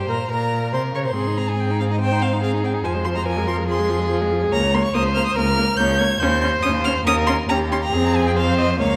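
A wet scoring-stage reverb with a 1.6-second tail surrounds this quick, spirited classical-period movement for string quartet at 141 BPM in 4/4, played with rubato and tuned to A4 = 439 Hz. A rich, focused first violin carries the melody up to Ab6 over a warm second violin line and an expressive viola accompaniment that slides with portamento, while the up-front cello holds the bass between Db2 and Db3, each player using vibrato. The cheerful harmony moves from Gmadd11 through Ab, Fm and Bbm/Db to Eb7 and arrives on Fm in this 9-second fragment cut from a longer piece.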